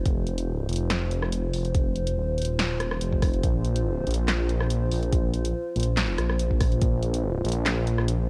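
A dark, slow-attack analog pad with chorus, phaser and cassette tape coloring opens this meditative excerpt of deep dubstep at 0.0 seconds, sitting over a saturated, detuned sawtooth bass that rumbles and beats up front, moving from an F5 chord to Bb5 at 3.4 seconds. At 142 BPM in a half-time 4/4 feel with a light swing on the 16ths and tuned to A4 = 436 Hz, a layered electronic kit with a punchy snare, handclaps, hi-hat and rim click rides on cassette tape alongside a deep electronic kick that drops out at 6.9 seconds. The home cassette recording is dry, with the drums re-recorded in a small room.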